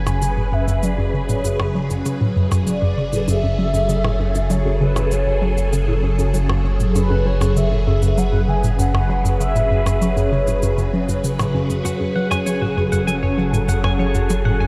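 Mysterious and hypnotic, this short cut of ambient, sequencer-driven space music moves at 98 BPM in F# minor, where a bouncy, hollow square pluck riff, a deep sub bass and a swirling, vintage phased string machine holding an F#madd9 chord carry a round, horn-like synth lead melody until 11.9 seconds, with tape-warm cabasa and percussion blips echoing softly beneath and a bright, twangy twelve-string electric guitar entering with shimmering arpeggios at 11.8 seconds, all in a dark production bathed in lush hall reverb.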